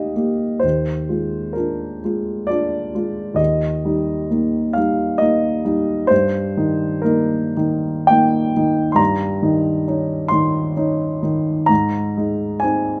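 A dark grand piano opens this 13-second fragment of a romantic classical nocturne, playing alone from the first moment to the last. The mood is tender and serene, set in Eb major and 3/4 at a slow 53-69 BPM, with a rubato feel that lets the time breathe. The piano spans from Eb2 up to C6, its tone mellow and intimate, with short sustain and audible action noise that brings the instrument close, placed up front in the sound. The harmony rests on Eb before moving through Bb7/Eb, Eb/G and Eb7/G, arriving on Ab at 11.7 seconds. A moderate reverb from a large studio, around 1.1 seconds long, surrounds the piano with a gentle sense of space.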